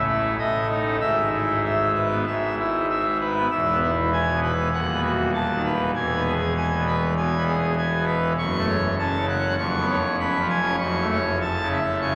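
In a steady, straight 4/4 pulse, this short classical organ toccata, cut from a longer piece, rings out with jubilant, brilliant energy as a solo pipe organ on full registration with mixtures fills the texture from deep pedal tones to high trebles. The majestic, up-front sound carries a romantic voicing through chords that move from E/G# and E to B7/D# before turning toward F#m and C#7/E# around 9.6 seconds. A long, wet cathedral reverb and a vinyl crackle frame the performance.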